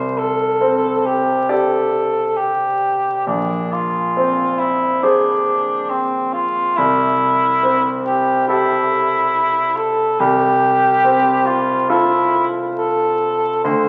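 Heard through the crackle of a very old 78 rpm record, this short cut from a longer classical piece sits in a recital hall whose reverb hangs for about 1.6 seconds. It is an impressionist duo in C major at 69 BPM in 4/4, played with rubato and a pastoral, luminous mood, tuned slightly below standard pitch. The cor anglais carries the melody throughout, mellow and touched with light vibrato, sounding roomy and somewhat distant even as it stands up front. Beneath it, the concert grand piano supplies the accompaniment with a clear, polished tone, deep bass and short sustain, keeping a present, forward place in the blend. The harmony drifts from Csus2 to Bb9 at 3.3 seconds, then C6 and finally Fadd9 over C at 10.2 seconds, giving the passage a soft, open glow before it is cut off at 13.9 seconds.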